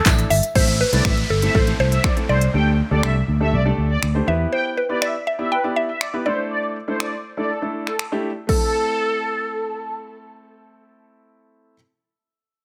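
The recording has a light, digital ambience, with the punchy drums and bass sitting up front. This bittersweet yet energetic dance-pop fragment moves at 121 BPM in a straight 4/4 in A minor, cycling through Dsus2, Am, Dsus4 and Em. A deep house kit of layered electronic kick, smooth hi-hats, shaker, finger snaps, handclaps and crash drives the opening, beside an amped fingered electric bass that pumps with sidechain and drops out at 4.5 seconds. A natural-sounding baby grand piano holds the accompaniment in the background, also pumping, while a woody, round FM mallet pluck with chorus and digital delay carries the melody. A detuned sawtooth supersaw swell, soft in attack and evolving under a phaser, shares that melodic range with pumping and delay, and an electronic downlifter sweeps beneath the early bars. A break arrives at 6.5 seconds, and the drums stop at 8.6 seconds as the music moves into a new section on A minor.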